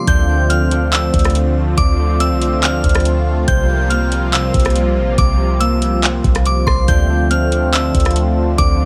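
Atmospheric cloud-rap hip hop in D minor at 141 BPM with a half-time feel, spacious and hazy, moving from Dm7 to C7sus4 at 3.5 seconds and back to Dm7 at 6.9 seconds in this short cut from a longer piece. A glassy, crystalline FM bell carries the high melody through chorus and digital delay, over a smooth, detuned sawtooth pad whose sustained chords pump against the sidechain, while a bright, ringing Celtic harp plays delayed arpeggios. Underneath, a clean, sine-like 808-style bass booms deep and dark beside an up-front analog drum machine of deep kick, metallic hi-hats, handclaps and rim clicks roughened by vintage 12-bit sampler grit, all set in a digital ambience.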